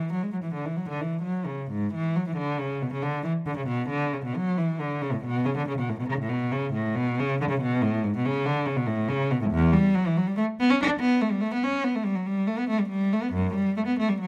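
Close, detailed microphones capture a single bowed cello up front, with a moderate recital-hall reverb lending air around each note. This serene, radiant baroque-style suite movement for unaccompanied cello flows in 12/8 with a free, rubato feel across its 14.3 seconds. The warm, expressive playing is marked by soft attacks, singing vibrato and gentle portamento slides, and it ranges from the instrument's deep low register up into its tenor voice.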